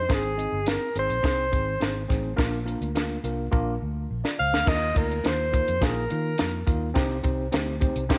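Light reverb and small-room ambience frame this danceable, uptempo 1960s-style soul excerpt at 105 BPM in Eb major, where a forceful, vibrato-laden alto saxophone carries a jazz-style solo melody up front with slapback echo until 6.7 seconds, over a worn, slightly out-of-tune tine electric piano, a round, foam-muted fingered electric bass, and a dry, compact cocktail drum kit with dark cymbals, a high-tuned snare and a punchy kick that plays a fill from 3.5 to 4.7 seconds as the chords move from Ab and Bb to Ebsus2 and Cm.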